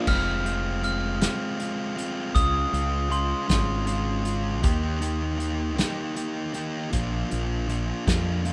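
A rough home-demo sound with little reverb frames this restless, bittersweet indie rock fragment, cut from a longer piece, moving in a slow 6/8 at 52 BPM in F minor. A thick, up-front fuzz guitar carries the riff across the whole 8.5 seconds, its picked, distorted tone ranging from Eb3 to G4. Beneath it, a growling fingered electric bass, overdriven and punchy, sits between F1 and F2, while a loose acoustic drum kit with a small-room feel adds a punchy kick, medium-tuned snare, hi-hat and dark crash cymbal. A glockenspiel played with soft plastic mallets rings out a bell-like melody between C6 and F6 with slapback echo, stopping at 4.2 seconds. The chords move from Fm to Db, then Eb and Bb.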